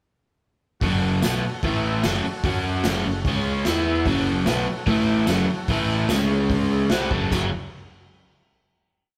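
A straight 4/4 garage stomp groove at 148 BPM drives this short, swaggering, raw garage rock piece in F# minor, with the band kicking in together at 0.8 seconds and a tambourine joining at 1.2 seconds, as if playing live in one large room. Up front, a bright, double-tracked electric guitar picks a crunchy power-chord riff bathed in spring reverb, moving mostly between F#m, A5 and C#5. A round, punchy fuzz bass doubles that riff in driving eighth notes, while a gritty acoustic kit with a tight kick, medium-tuned snare, dark cymbals and a rolled-off top pounds underneath. In the background, a vintage combo organ holds buzzy triad chords with heavy vibrato, and a jingly tambourine sits close but low in the mix. The organ breaks out with a short fill at 6.5 seconds before the band lands on a final F# major chord at 7.3 seconds, which rings out in the room's moderate reverb.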